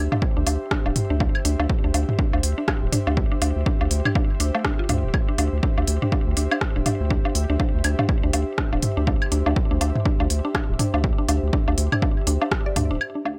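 Minimal techno at 122 BPM in 4/4, this short, sparse and clinical cut from a longer piece moves with a 59% swing on the 16ths and sits on a single D7(no3) chord. A punchy analog kick, re-recorded in a large room and placed up front, drives the groove from 0.2 seconds, joined by a minimal click kit of tape-warmed hi-hats and rim clicks that carries a small-room character. Layered electronic toms, woodblock and claves fill in the percussion, while a round, deep, dark bass, sustained and also up front, anchors the low end with high-pass filtering and sidechain pumping. A woody, mallet-like FM pluck plays the riff between A3 and D5, its fast-attack, decaying notes treated with chorus, delay, pumping and a moving notch over a noise layer. Behind it, an airy, breathy pad with a slow attack and long release hovers softly between G4 and E5, mellowed by chorus and ring modulation and pulsing with the sidechain, all set in a light reverb.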